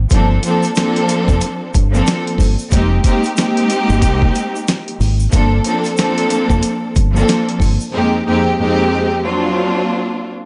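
Dusty and intimate, this boom-bap hip-hop excerpt sits in light small-room reverb with a softened top end, carrying a tough, reflective mood at 92 BPM with a swung sixteenth-note feel in G phrygian. A gritty, compressed sampler-style drum kit with a thumpy kick and medium-tuned snare drives alongside a deep, round, punchy fingered electric bass, while a grainy tube shaker ticks in the background. Up front, a lush bowed string section with vibrato and expressive portamento moves through Gm11 and rootless Fm11 chords. It carries on after the drums and bass stop at 7.8 seconds and the shaker fades at 7.9 seconds, landing on a D7alt at 9.2 seconds.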